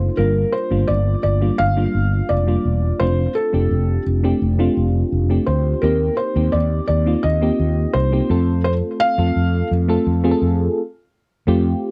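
From the first moment, a felt-muted upright piano carries the melody over a mellow FM electric piano and a fretless electric bass in this glossy, nostalgic 1980s-style pop excerpt, moving at a relaxed 85 BPM in a straight 4/4. The upright piano sounds soft and intimate, its audible action noise lending a natural closeness, while tape echo trails its melodic line until it finishes at 9.7 seconds. Beneath it, the FM electric piano provides round, warbling chords with a dark, vintage colour, a faint noise layer and a fast, decaying attack, thickened by chorus. The amped fretless bass sits a little louder and up front, anchoring the harmony as it moves from Gm7 through Dm7/F and Eb6 to F. The sound is dry and close, like a 1970s studio recording with little reverb, and a brief stop arrives at 10.8 seconds before the clip ends.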